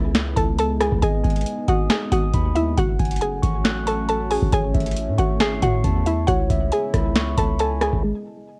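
A woody, round mallet-like synth pluck carries the melody through chorus, a low-pass filter and cassette tape from the outset, over a detuned sawtooth pad with slow attack and chorus, a long, decaying sine 808-style bass, and, from 0.1 seconds, a booming analog drum machine with a deep kick, crisp snare, metallic hi-hats and rim clicks re-recorded in a large room and placed up front. At 1.0 seconds a mellow tine electric piano adds accompaniment through a low-pass filter and cassette tape, as the chords move from C#m7 through G#m, F#madd9 and A. This menacing, brooding half-time trap passage, cut from a longer piece, has little reverb and the character of a home cassette recording.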